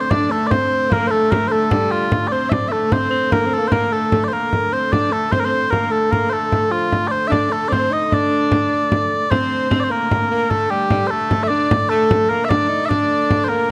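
Driving and ancient in mood, this medieval dance moves at 100 beats per minute in a straight 6/8, counted in dotted quarters, and is cut from a longer piece. Mellow small bagpipes carry the melody up front between F4 and E5, their sweet, continuous tone shaded with vibrato. A raspy tenor saxophone plays a second line from F3 to Eb4, gritty yet smooth at the top, with light vibrato, scooped notes and a pop-style delivery. In the background, a single player's wheel-bowed, keyed hurdy-gurdy holds a rich, nasal drone between D3 and A3 with an airy bow, while a deep, large frame drum played with soft hands sounds close and dry from 0.1 to 13.5 seconds. Close, detailed microphones and light reverb frame the ensemble, and the music passes from its opening section into a second one at 9.3 seconds.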